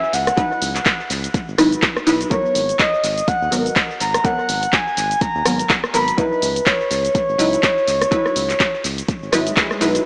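A breathy, flute-like synth lead carries the melody through this moody deep house excerpt, its soft, sustained tone thickened with chorus and tape echo over filtered dub chord stabs that pump with sidechain ducking through phaser, lush chorus and echo as the harmony moves from C#m11 to G#m9 at 2.3 seconds and back. An up-front, swung deep house kit of cabasa, handclaps, hi-hat and rim click joins a deep electronic kick and a round, dark analog bass, both drum parts sounding re-recorded in a small room. An electronic swell enters in the background at 9.3 seconds, all within an echo-heavy mix with plate reverb and a small-speaker character.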